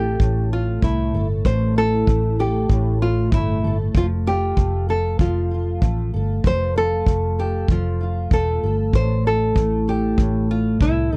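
A dry, close 1970s-style studio sound frames this carefree, sunny acoustic pop snippet in 4/4, where a small, dark nylon-string guitar carries the fingerpicked melody with audible finger squeak over a double-tracked, full-bodied jumbo steel-string guitar fingerpicking the accompaniment, a round, punchy, foam-muted vintage electric bass, and a tight kick drum with a rolled-off top, played with brushes from 0.2 seconds, as the chords move from Am to F and back to Am.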